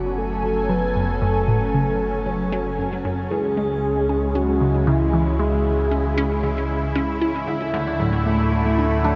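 A bright, thumb-plucked concert harp rings up front with tape-echoed arpeggios from 7.5 s, arriving late in this cosmic, luminous stretch of ambient, sequencer-driven space music cut from a longer piece. Beneath it, a squelchy, wave-folded blip pluck repeats a resonant riff through phaser, shimmer reverb and tape echo, while a lush, detuned unison pad holds chorused chords and a deep sine sub bass anchors the low end. A soft octave-layered synth lead with vibrato carries a dark, full melody until 7.0 s, and the music sits in a vast, echoing space with a huge reverb tail.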